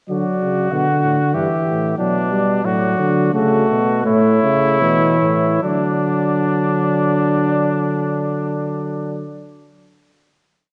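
In a straight 4/4 that begins somewhere between 72 and 97 BPM and slows down until about 7.3 seconds, this short, complete classical canzona for brass ensemble unfolds in D major with a stately yet lively character. Four solo voices each carry one line of imitative counterpoint. A cornet on the melody and a euphonium on the accompaniment are both dark in tone. The warm trumpet, with light vibrato and a soft attack, sits up front on the second line, while the cornet, also softly attacked and close-miked, stays in the background. A mellow euphonium with a smooth top anchors the bass. The exposition moves from D through Em/G, D/A and A before settling on a held final D chord from 5.6 seconds, all within a wet scoring-stage reverb and the worn, warbling, muffled haze of old cassette tape with warbly pitch drift.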